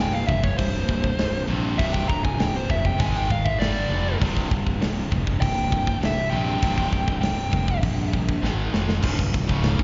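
A dark, smooth lead guitar solo with overdrive, slapback echo and delay carries this relentless heavy metal excerpt at 99 BPM, singing over a stack of three picked rhythm guitars: a bright, double-tracked distorted part and a tight one with slapback echo sit in the background, while a sludgy overdriven guitar stays very quiet. Up front, a round, punchy fuzz bass played with the fingers pairs with a tight metal drum kit that enters at 0.3 seconds, its medium-tuned snare, kick, hi-hat, ride and crash driving to a fill at 8.4 seconds. The whole sounds like a live gig heard through the venue's PA, with recital-hall reverb and dulled highs lending a murky edge.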